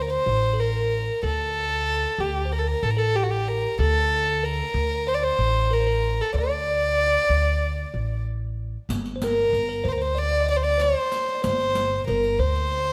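A dark, airy bowed violin carries the melody up front with light vibrato and a soft attack, over a woody pizzicato upright bass and a bell-like tine electric piano with phaser tracing a second line in the background. This soulful, hypnotic Arabic maqam excerpt sits in D maqam hijaz at 94 BPM in a lightly reverberant space. At 8.9 seconds a riq played with hard hands joins as the music moves into a new section.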